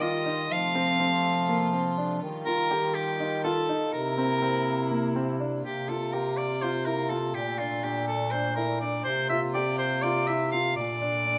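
A bright, breathy soprano saxophone carries the melody up front in this playful, restless piece of contemporary chamber music in 7/8, moving at 246 eighth-note beats per minute. Beneath it, a worn-sounding baby grand piano with long sustain plays arpeggios, a distant, roomy bass clarinet holds the bass line, and a chamber string section floats pure, soft-attack bowed chords. Moderate recital hall reverb surrounds the ensemble as the harmony moves from Ebadd9 and F toward C7, then turns between C7sus4 and Bbmaj7 from 5.6 seconds.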